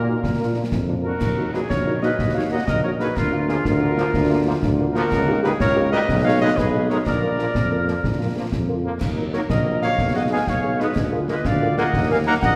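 A dark, close-miked cornet with light vibrato leads this resolute, martial wind-band march in Eb minor at 123 BPM in a straight 6/8, over an up-front warm tuba bass, a smooth, tight woodwind section on the second line, bright trombone chords and a mellow, punchy French horn section set in the background, a clear, very quiet euphonium heard only until 0.7 s, and close concert snare, bass drum and brilliant clash cymbals, all in a reverberant concert hall heard from further back in the room.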